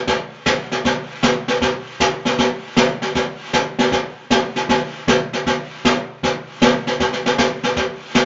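This country excerpt is a short stretch of brushed drums alone, running from 0.1 to 8.2 seconds. The mood is playful and cheerful, set at a brisk 156 BPM in 4/4 with a swung eighth-note feel. The acoustic jazz brush kit sits up front, combining brushed snare with hi-hat, kick drum and a medium-tuned snare, while the kick has a boomy weight. The kit carries a roomy, small-room character with a touch of distance. A moderate studio reverb adds a short tail, and the top end is rolled off, giving the recording a soft, muted sheen.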